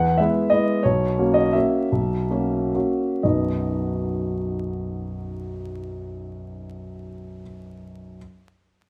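A rubato 3/4 lilt, ranging from 110-193 BPM and slowing down from 0.3 to 3.2 seconds, carries this elegant, playful classical piano waltz in B major, where a solo grand piano with an intimate, natural, up-front tone and audible action noise moves from E through F#7/B to B, set in a moderate large-studio reverb beneath a layer of vinyl crackle in a brief cut from a longer piece.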